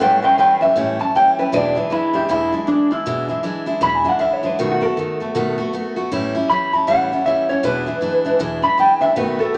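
A twangy, slightly broken-up electric guitar played through a small old amp takes a clean, bright solo with spring reverb across this rowdy, retro swung rock excerpt at 157 BPM in E mixolydian, backed by a full-bodied picked dreadnought acoustic guitar as the chords move from A7 to E7 to B7 in a moderate club room.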